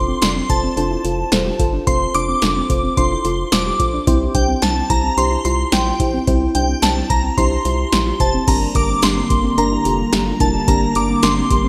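Upbeat and bright, this synth-pop excerpt moves at 109 BPM in F major, its chords shifting from F to C and then to Gm at 8.5 seconds. Up front, a shimmering FM bell carries the melody high in the register, its detuned, warbling tone softened by ensemble chorus and digital delay into a dreamy halo. Beneath it, a lush FM electric piano layered with a soft pad supplies full-bodied accompaniment with chorus and tremolo, while a gentle, round pluck ripples through arpeggios in the background, echoed by delay. A rubbery square-wave bass gives a hollow, bouncy low end, and an analog drum machine punches in at 0.2 seconds with a deep kick, punchy snare, metallic hats and crash, all overdriven and bathed in gated reverb. At 8.5 seconds a vintage string machine of violas joins with mellow sustained chords, and the whole mix sits in a lush hall with a crisp 1980s-style digital sheen.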